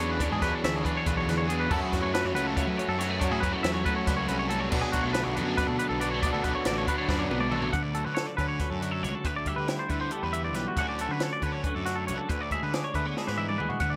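Playful and wistful, this short cut from a longer math rock and midwest emo piece moves in an odd 7/8 metre with a straight feel. A clean, compressed twelve-string electric guitar lays down shimmering accompaniment through analog chorus and tape echo, while a bright, twangy electric guitar sits up front with picked arpeggios high above it, also bathed in tape echo. A biting, double-tracked overdriven guitar drives a riff through the opening half before dropping out at 7.7 seconds, and a fuzzy, overdriven picked bass holds the low end throughout. A compact cocktail drum kit sounds dry and natural, with a punchy kick, high-tuned snare and dark cymbals, and it plays fills at 7.1 and 13.2 seconds. The echo-heavy mix sits in light reverb and small room ambience, with the harmony shifting from minor-seventh colours toward major-seventh chords anchored on D in the second half.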